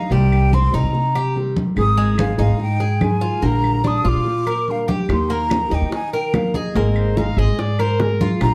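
The breathy, hollow jazz flute carries the melody from the first moment, its soft-attacked, vibrato-laden line lifted by a slapback echo and plate reverb as it ranges from Eb5 to Eb6. This sunny, relaxed 8.5-second excerpt of Cuban son and guajira moves at 145 BPM in a straight 4/4, with harmony passing from Cm through Ab5, Bb6 and Eb to Abadd9. A small, fingerpicked nylon-string guitar and a metallic Cuban tres with doubled strings supply accompaniment and arpeggios, while a woody pizzicato upright bass sits up front and anchors the low end. Bright, thin-skinned congas struck with hard hands drive the groove alongside background claves, and round, low-tuned bongos join at 5.1 seconds. Near the close, at 7.0 seconds, a present, bright trumpet adds a brief second line, all within a dark, moderately reverberant studio production.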